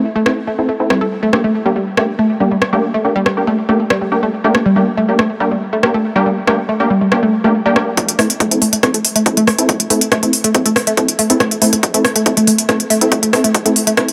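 A detuned, aggressive rave stab opens the excerpt, its thick sawtooth chords running through a filter sweep for the first 8 seconds over a shift from A minor to G minor, colored by chorus, tape echo, cassette grit and sidechain pumping. An analog pluck riff joins almost at once, round and nasal with a noise layer and a phaser, driven by overdrive and pumping up front. A techno drum kit of smooth hi-hats and rim clicks, overdriven and close, carries this driving, hypnotic peak-time techno in a straight four. At 8.0 seconds the harmony returns to A minor and an overdriven, heavy electronic kick drum, thinned by a high-pass filter, arrives to power a build-up. The whole mix sits in a huge ambient reverb with a long tail, trimmed at the low end by a high-pass filter, and the passage is cut from a longer piece.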